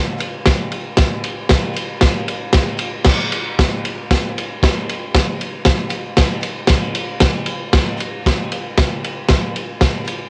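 A crunchy, saturated breakbeat drum kit carries this swaggering, rowdy rock excerpt alone from 0.2 to 10.2 seconds, its tight kick, medium-tuned snare and dark crash and ride cymbals sitting up front with a gritty, rolled-off cassette-tape grit in a dry home recording cut from a longer piece.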